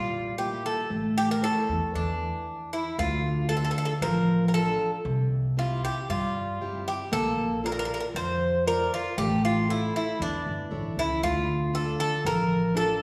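Cool and brooding, this Greek folk excerpt from a bouzouki band moves at 116 BPM in D minor, opening on a tense Edim-to-A turn that halts in a brief stop at 2.5 seconds before the band settles into a Dm, C, Bb, A progression from 3.0 seconds. Up front, the bright, metallic bouzouki carries the melody with the shimmer of its doubled strings, while a picked steel-string acoustic guitar adds parlour-sized accompaniment with fresh-stringed sparkle and a pizzicato upright bass provides a woody, thumpy foundation. Generous reverb from a church or concert hall surrounds the trio with a spacious, resonant glow.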